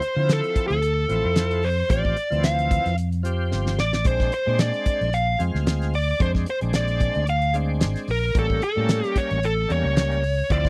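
Soul blues in a straight-eighth 4/4 at 112 BPM in D minor, this soulful, mournful excerpt sets a smooth, dark overdriven lead guitar melody up front over a bright, shouting tonewheel organ with key click, chorus vibrato and slow rotary speaker, a round, amped fingered electric bass entering at 0.2 s, and a damped 70s drum kit with a fat snare and tight kick that plays a fill at 3.5 s, all in a dry, close 1970s-style studio sound as the chords move from Dm7 to Bb7 at 4.1 s and A7b9 at 8.4 s.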